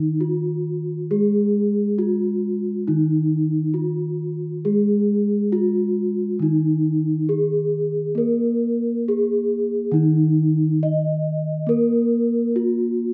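A bronze gamelan-type metallophone carries the melody up front, its padded disc mallets drawing a mellow, ringing tone between Eb4 and Eb5. Its paired tuning gives each note shimmering beats and a boxy, small-room colour. A second bronze metallophone holds the accompaniment lower down, between Eb3 and Bb3, soft and mid-forward and also close in the mix. Both parts carry a slapback echo and play together from 0.0 to 13.1 seconds, with the opening phrase returning at 9.9 seconds. The mood is serene and ceremonial in a straight four, and this brief fragment is cut from a longer piece, recorded outdoors with a dry sound and nothing above 8.0 kHz.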